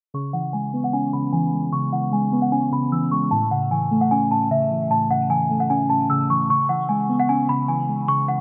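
Hard-hitting yet melancholic, this half-time hip hop excerpt sets a sweet, bell-like celesta melody, softened by low-pass filtering and tape echo, up front over dark, warbling felt-like synth keys thickened with chorus, all in a small room with light reverb as a filter sweep runs throughout and the harmony moves from C#m7 to A at 3.3 seconds and back to C#m7 at 6.5 seconds.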